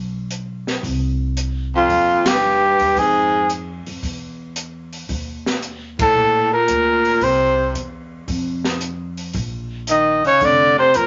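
A swinging 113 BPM groove in 4/4 opens this sophisticated small-group jazz excerpt, with woody pizzicato upright bass from the start and an open kit of dark cymbals, high-tuned snare and boomy kick joining at 0.3 s, before an up-front trumpet with vibrato takes the melody at 1.8 s over a clear, soft-attack baritone saxophone second line with scooped notes, the band hitting accents at 2.2 and 5.9 seconds in a moderate club reverb.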